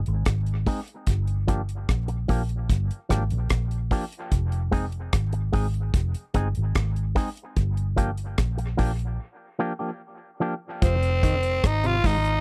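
Dub reggae at 74 BPM in F dorian, meditative and deep, this dry, close 1970s-style studio cut opens on a round, foam-muted bass and a deep drum kit with a tight kick, hi-hat and rim click, joined at 0.7 seconds by a dark, compressed envelope-filtered guitar drenched in low-pass filtering and dub echo over Gm7 and Fm7. The guitar's filter sweep runs through the first section, a break arrives at 9.2 seconds, and at 10.8 seconds a raspy, gritty tenor saxophone with vibrato takes the melody through dub echo while a stringy auto-wah clav adds mellow arpeggios in the background.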